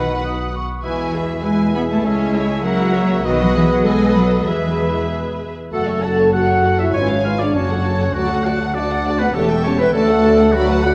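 A dark, warm orchestral sound fills a reverberant scoring stage in this spirited, graceful classical-period movement, taken from a longer piece and moving at 99 BPM in a straight 2/4. A lush, distant symphonic violin section carries the melody with smooth, even vibrato, while a clear solo oboe, a background clarinet, a woody chamber violin section and a pure, very quiet large flute ensemble weave second lines around it. Beneath them, a mellow French horn section holds sustained chords, a rich, focused chamber viola section fills in the accompaniment, and a punchy, dark bassoon adds support until 5.4 s. The bass is anchored by an expressive cello section with soft attacks and portamento, joined by an intense, distant double bass section. The music begins in E major and turns to F# minor at 5.7 s, where the harmony moves through a D chord and an A7 over E before settling back on D.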